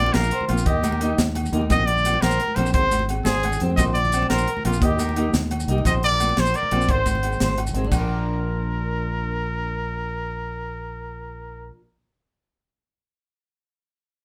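A straight 12/8 groove at 116 BPM in dotted quarters drives this sunny highlife guitar band excerpt, set in Bb mixolydian and cycling between Bbsus2, Eb and Ab before landing on Bb at 7.9 seconds. Up front, a clear, punchy trumpet carries the melody with pop-style vibrato, matched in presence by a round, dark fingered electric bass. A bright, twangy electric guitar through a small old amp picks slightly broken-up arpeggios, while a boxy acoustic archtop guitar is fingerpicked in the background, its finger squeaks audible. A dry, polished funk kit with a high-tuned snare, tight kick, hi-hat and crash plays alongside ringing congas struck with hard hands, background agogo bells and grainy, band-limited maracas, and all of this percussion stops around 8.0 seconds. From there the trumpet, guitars and bass carry on alone until about 11.8 seconds, heard as a band playing live together in a small room with moderate reverb.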